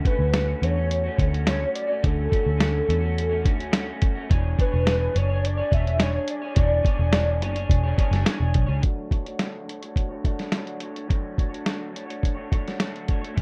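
A straight 4/4 groove at 106 BPM drives this nostalgic, laid-back bedroom pop excerpt in D lydian. It is carried by a lo-fi sampler-style drum kit with a muffled, thumpy kick, a medium-tuned snare and hi-hat, compressed, re-recorded in a small room and set up front. A vintage muted picked electric bass, foam-muted, round and punchy, sits up front as well. An electric guitar through a small old amp plays slightly broken-up, picked accompaniment coloured by analog chorus, warbly pitch drift and a low-pass filter. Over Dmaj7 and E13 chords, a detuned lead blending triangle and sawtooth tones carries the melody with a fast attack, long sustain, tremolo, vibrato and ensemble chorus until 8.3 seconds. At 8.8 seconds the harmony returns to Dmaj7, the bass stops, and a filter sweep runs across the guitar through to 13.4 seconds, all within a dark, dry production with little reverb.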